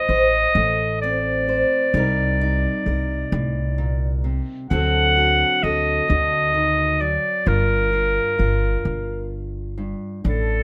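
A bright, soft-attacked clarinet carries the vintage, classical-style melody up front in this intimate, melancholic folk fragment in 6/8, over a fresh-stringed fingerpicked steel-string acoustic guitar and a dark, woody pizzicato upright bass that enters at 0.1 seconds, moving from Adim through Cm7 and D7 to Gm7 in a rough home-demo mix with moderate studio reverb.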